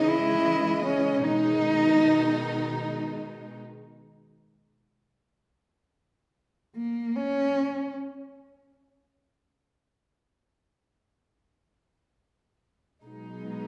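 Melancholic and heartbroken, this folk fragment sets a dark, woody solo cello melody, bowed with vibrato and up front, over an intimate studio string section sustaining soft-attacked sul tasto chords with vibrato, the cello returning briefly at 6.8 seconds and the strings coming back at 13.0 seconds, inside a wet recital-hall reverb.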